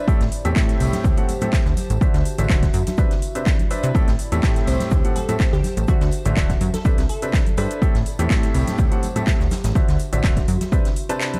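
Energetic yet bittersweet, this piano house cut from a longer piece moves at 124 BPM in A dorian with a light swing, as a clear, woody upright piano riff with tape echo and sidechain pumping cycles through Am7, D9 and Cmaj9 over a warbling, nostalgic tape-like pad with chorus and phaser. A punchy, overdriven electronic kick sits up front beside a funky, plucky analog bass and an overdriven house kit of handclaps, metallic hats and shaker, while an airy street-band kit and ringing tambourine and congas fill the background. A crystalline wavetable pluck with chorus and tape echo surfaces between 4.7 and 7.9 seconds, and the kick drops out at 11.2 seconds in a dark studio mix.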